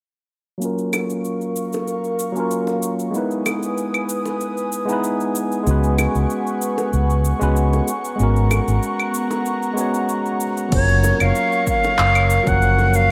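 A gritty, barky overdriven tine electric piano sits up front in this sunny, blissful sunset chillout excerpt, played through a combo amp with low-pass filtering, delay and a filter sweep that runs until 10.7 seconds. At 95 BPM in a straight 4/4 in F# major, it shares the chords F#maj7, Emaj7, C#7sus4 and G#m11 with an airy, breathy pad whose slow attack, long release and chorus give it a soft, hazy glow. Underneath, a layered, overdriven deep house kit of cabasa, claves, crash cymbal and handclaps rings in gated reverb, while tight, high-tuned acoustic bongos patter in the background. A fretless electric bass enters up front at 5.7 seconds, amped and thickened by ensemble chorus, and at 10.7 seconds a punchy electronic kick joins alongside a silver concert flute whose tongued, unsteady vibrato line carries an airy, warm metal tone through delay. The whole excerpt is set in a moderate plate reverb with bright 1980s-style digital production.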